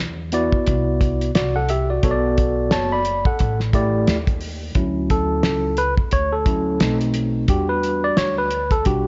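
The recording has a worn, warbling cassette-tape character, with its pitch drifting and its highs dulled above 7.8 kHz, all set in a light reverb. This short excerpt of jazz-hop sits at 88 BPM in D major, with 16th notes swung at 59%, and its mood is both warm and cool. A pizzicato upright bass on steel strings opens alone, woody and tube-saturated, before a cloth-damped, thuddy drum kit joins at 0.3 seconds with a fat snare, a tight kick and hi-hat, heard up front in a small room with a rolled-off top. A clean tine electric piano, played through its built-in speakers and also placed up front, enters at the same moment and comps over chords such as Cmaj9#11, Bm7 and A7sus4. At 4.8 seconds the electric piano takes a solo over Dmaj9, B7b9 and Em9, which carries the passage to its cut-off.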